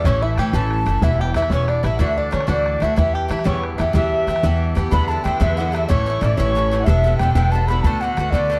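Dark, lightly reverberant production gives this brief fragment of a Celtic jig a dusky glow, even as its mood runs wild and driving at 123 BPM in 6/8, in E dorian. A soft-attacked baroque flute carries the melody with gentle vibrato and a plate-reverb sheen. Behind it, a reedy, distant wooden whistle adds a second line with a crisp chiff, while a twangy, fingerpicked bluegrass banjo plays alongside it from the start until 4.7 seconds. A picked Irish bouzouki rings bright and metallic on its doubled strings across chords such as Em, Dadd9, A and Bm7/D. Up front, a growly, thumpy pizzicato upright bass sits beside a close, boomy bodhran, giving the jig a woody, weighty pulse through its two short sections, the second beginning at 4.9 seconds.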